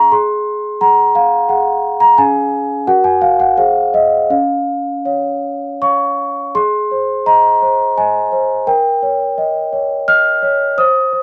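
In a gentle three-beat sway at 85 BPM with a straight feel, this short classical lullaby for solo large celesta moves with an innocent, tender calm. The celesta carries everything from the first moment to the close at 11.2 seconds, spanning Db4 to F6 with a bell-like, mellow tone that comes from soft felt hammers, sitting up front and ringing. The opening phrase rests in Db major, circling through Ab7, Db and Gb before returning home. At 6.6 seconds the music shifts to Ab major for a second section, touching Eb7 over Bb before this excerpt ends. Light reverb and a dark, warm production frame the instrument, which is tuned slightly high to A4 = 445 Hz.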